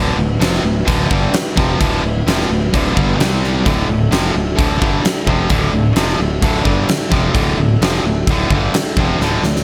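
A straight 4/4 pulse at 130 BPM drives this swaggering, anthemic hard rock excerpt, cut from a longer piece and tuned slightly flat to A4 = 435 Hz. A huge arena drum kit enters at 0.4 seconds with a fat snare, punchy kick and bright crash cymbal in a pumping hall sound, and it closes with a drum fill from 9.2 to 9.6 seconds. Up front beside it, a double-tracked, picked electric guitar plays an overdriven riff in the low register, while a fingered electric bass adds a growly fuzz tone. Behind them, a mellow, flute-like tonewheel organ holds sustained chords through a slow rotary speaker, its key click audible under the soft tone. The harmony moves from D5 to C5 at 3.2 seconds and back to D5 at 3.6 seconds, all set in light reverb.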